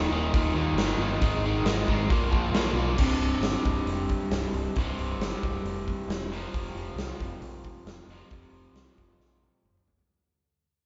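A straight, driving 4/4 groove gives this sunny classic rock fragment its push, with a huge arena drum kit of bright cymbals, medium-tuned snare, punchy kick and toms joining at 0.3 seconds. An overdriven, double-tracked electric guitar sits up front with a warm picked riff over Eb, Ab5 and Bb5 before moving to C5 and F5, while a growling, overdriven picked bass adds bright, punchy low end. The band plays together live in one room with light reverb, fading out from 3.0 seconds and closing with a drum fill at 9.2 seconds.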